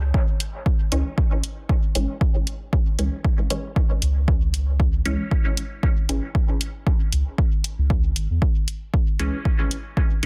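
An overdriven, punchy electronic kick sits up front in this cavernous, hazy dub techno fragment with a lightly swung feel, alongside a deep, round, sidechain-pumped sub bass, and is joined by a tape-warm analog hi-hat and, from 0.9 seconds, a muted, resonant filtered chord stab that pumps as well and carries phaser and dub echo, all in a dense, heavily limited, dry mix.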